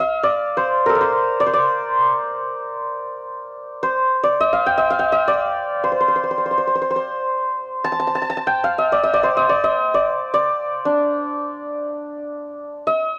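Persian modal ensemble music in free time and D dastgah shur, this soulful, hypnotic fragment of a longer piece features a solo acoustic santur, bright, hammered and shimmering, ringing up front between D4 and A5 from 0.0 to 13.2 seconds in a moderate studio reverb, all heard through worn, warbling cassette tape with a warbly pitch drift.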